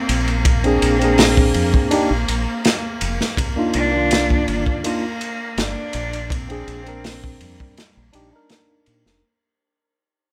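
A rough home-demo mix with light reverb frames this cinematic, hypnotic trip hop excerpt, where a crunchy, saturated breakbeat kit with punchy kick and dark cymbals sits up front beside a bright tine electric piano coloured by harmonic tremolo, 12-bit sampler grit and tape echo, a round, deep dub bass with tube saturation holds the low end, a clear symphonic string section sustains smooth chords, and a single rich bowed cello sings a vibrato melody through tape echo until 8.5 seconds, as the mix fades out from 1.4 seconds onward.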